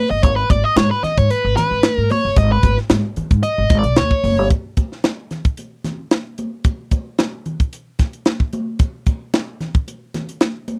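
A biting, overdriven electric guitar takes a picked solo over G#m at the start of this hypnotic, sly funk cut at 112 BPM, backed by a woody pizzicato upright bass, both up front until 4.5 seconds. From there, the crisp fusion drum kit, with its high-tuned snare and tight kick, carries on with softer, bright, damped congas through to 10.8 seconds with the harmony dropping away. The sound is dry and close, in a 1970s studio style, with little reverb.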